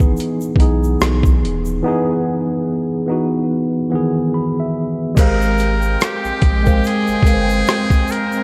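A swung 72 BPM lo-fi hip hop groove in 4/4 rides on a gritty, pitched-down boom bap sampler kit with a thumpy kick, hi-hat, rim click and crash, plus a grainy egg shaker tucked in the background. A worn, slightly out-of-tune tine electric piano with cassette tape colour sits up front over a deep, sustained sub bass, moving from Emaj7 through a break that runs from 1.8 s. At 5.2 s the harmony shifts to G#maj13 as a buzzy, metal-muted jazz trumpet solo enters with diffuse ambient delay, backed by shimmering vintage string-machine violins with ensemble chorus, all in a cosy, nostalgic, dreamy mix soaked in lush hall reverb.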